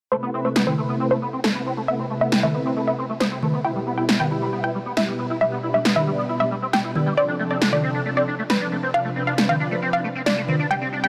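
Set in a light reverb, this soaring, euphoric uplifting trance excerpt at 136 BPM in A minor pairs a lush, detuned unison pluck melody with tape echo and a filter sweep, a silky analog string pad holding sustained chords up front through ensemble chorus, and a squelchy, resonant liquid acid bass playing arpeggios with chorus, tape echo and its own filter sweep, while an overdriven techno drum kit with a punchy snare and toms enters at 0.6 s and stops at 10.6 s over chords moving from Amadd9 to Em to Dm7.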